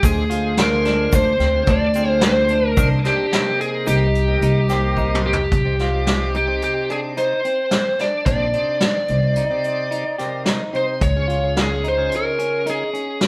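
A biting, overdriven lead guitar carries the melody up front in this tense, intricate progressive instrumental, a short cut from a longer piece played by a band live in one stone room with moderate reverb. Beneath it, a bright tonewheel organ shouts through light overdrive, key click and a slow rotary speaker, while a dark, clean semi-hollow electric guitar picks out fingered arpeggios from 0.3 seconds, shaded by a vibrato effect. A woody pizzicato upright bass with steel strings sits forward in the mix, and a vintage kit played with brushes gives a punchy kick, a medium-tuned snare and a rolled-off top. A grainy egg shaker rustles in the background until 5.1 seconds, just as a drum fill leads into the second section at 5.5 seconds. The uneven five-beat meter and straight feel keep the harmony moving from half-diminished and minor seventh chords toward a minor add-nine and a closing shift to Db at 11.0 seconds.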